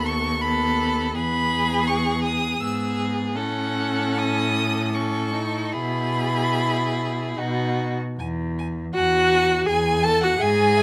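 A single bowed cello sits up front in this slow, romantic string quartet movement, its focused tone anchoring the low register beneath the ensemble. Above it, one violin carries a lyrical melody high in its range while a second violin weaves an inner line, and the viola, the most prominent of the four in level, fills out the accompaniment in the middle. Each player bows with vibrato, giving the quartet a rich, singing quality. Set in E major and 3/4 at roughly 72-84 BPM, the music moves with a gentle rubato and a serene mood, its harmony resting on the tonic and touching F-sharp minor before settling on the dominant. At 8.2 s the phrase resolves to E and a new section begins, carried by light reverb until the cut at 10.8 s in what is a short portion of a longer piece.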